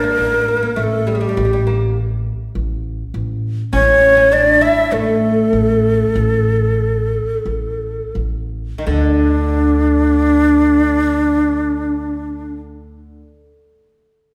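Arabic maqam ensemble music, melancholic and longing, in which a breathy, bright low ney carries the melody up front with vibrato and crisp attacks, a plucked, fretless oud with woody double strings plays a deep second line beneath it, and a pizzicato upright bass with steel strings sits close underneath, all ringing in a reverberant recital hall as the pace slows between 3.7 and 8.9 seconds before a brief new section in this fragment cut from a longer piece.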